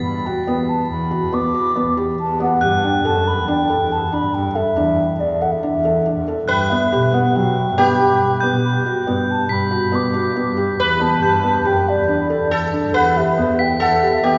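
Moving in a straight 5/4 at 139 BPM, this restless, hypnotic fragment of contemporary chamber music sets a hollow, pure baroque flute melody over soft, felt-muted upright piano arpeggios, a rich bowed double bass with vibrato, and a dark, bell-like shimmer of crotales struck with plastic mallets. At 6.5 seconds a plectrum-plucked sitar adds a buzzing second line ringing with sympathetic strings, as the harmony drifts from Emadd9 through Dsus4/E and Gmaj7 before settling on Em. A long, wet cathedral reverb gives the church or concert hall setting a distant glow, with the highest frequencies rolled off.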